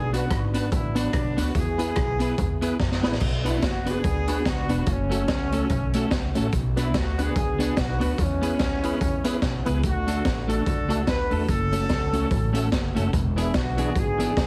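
A raw garage drum kit sits up front in this joyful, cheerful ska excerpt, its high-tuned snare, boomy kick, rim clicks, hi-hat and crash sounding gritty and saturated with a rolled-off top, and a drum fill at 2.8 seconds leads into the longer second section. At 145 BPM with a swung eighth-note feel, woody pizzicato upright bass moves beneath the chords Bm, E, F#m and D. A smooth horn section with light vibrato takes the melody, a twangy, clean electric guitar with tremolo accompanies, and a reedy tonewheel organ with key click, chorus vibrato and a slow rotary speaker adds stabs from the background, all within light small-room reverb and a heavily compressed, radio-like sound.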